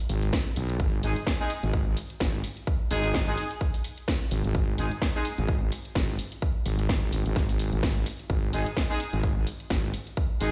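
Aggressive and gritty, this bass house excerpt swings its 16ths as a heavy, saturated wobble bass with a sawtooth edge and chorus pumps up front against a punchy, overdriven electronic kick and a garage kit of hi-hat and cracking snare. A tight, bright horn section fires pop-style stabs with tape echo and sidechain pumping from 1.0 to 5.2 seconds, then returns at 8.5 seconds. The whole cut sounds as if played on a big sound system in a bare stone room, with a faint mains hum beneath.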